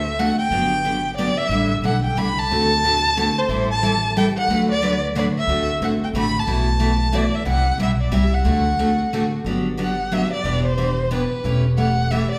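Playful and swinging, this excerpt of acoustic string swing in the jazz manouche style moves at a quick 181 BPM in 3/4 in G major, with a dark, expressive bowed violin carrying the melody up front, shaded with vibrato and portamento and a smooth top. A bright, full-bodied picked steel-string acoustic guitar sits beside it, while a woody, thumpy pizzicato upright bass on gut strings anchors the low end. The trio sounds set in a church or concert hall with a wet recital-hall reverb, and the violin takes a solo from 9.4 s over Gmaj7, Em7 and A7/E changes.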